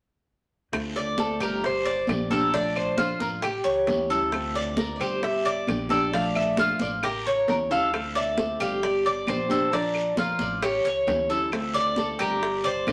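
A straight 4/4 groove at 134 BPM drives this danceable Cuban son and guajira excerpt in D minor. Congas, bongos, claves and guiro sit in the background from 0.7 s: high-tuned, thin-skinned congas and tight bongos played with hard hands and recorded close and dry, woody claves, and a raspy guiro heard in a live room. Underneath, a dark, thumpy pizzicato upright bass on gut strings anchors the low end, while a thumb-plucked nylon-string guitar with a deep classical tone supplies accompaniment. Two picked Cuban tres parts ring out on top with metallic, partly octave-doubled strings: one plays warm arpeggios from 1.0 s, and a brighter one, up front, carries the melody from 1.2 s. The harmony cycles through Dm7, Gm9, Bbmaj7 and A7, once as A7b9, before landing on Gm, set in a moderate studio reverb.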